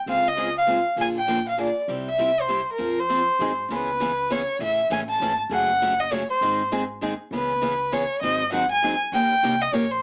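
A nasal, vibrato-rich bowed violin carries the melody up front in this fiery, virtuosic stretch of gypsy-jazz string swing in a swung three-time. Beside it a bright, boxy parlour guitar picks the accompaniment on fresh steel strings, while a woody, thumpy pizzicato upright bass sits further back. The harmony moves to a new centre at 3.7 s, and the trio plays within a small, moderately reverberant room with a small-speaker tone in this snippet cut from a longer piece.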